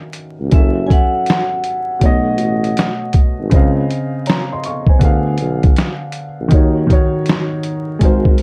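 A dark, woody upright piano opens this cosy, nostalgic lo-fi hip hop excerpt, its intimate, mellow tone softened by a low-pass filter and carrying audible action noise as it plays accompaniment from the start. A compressed, pitched-down sampler-style drum kit arrives at 0.1 seconds with a thumpy kick, medium-tuned snare, hi-hat and handclaps, sounding muffled and up front as if re-recorded in a small room. The warm tuba takes the bass at 0.4 seconds, distant and roomy, with a soft attack, light vibrato and scooped notes in a jazz style. A bright, metallic vibraphone struck with hard mallets and its motor off carries a brief ringing melody from 0.5 to 3.1 seconds, filtered and trailed by analog delay. At 80 BPM in 4/4 with a 16th-note swing, the harmony drifts through rich chords such as Ebm9, B9, Dbmaj9 and Ddim7 before settling on Ebm7. Moderate studio reverb, vinyl crackle and a dark, warm production give the whole track a cosy, nostalgic feel.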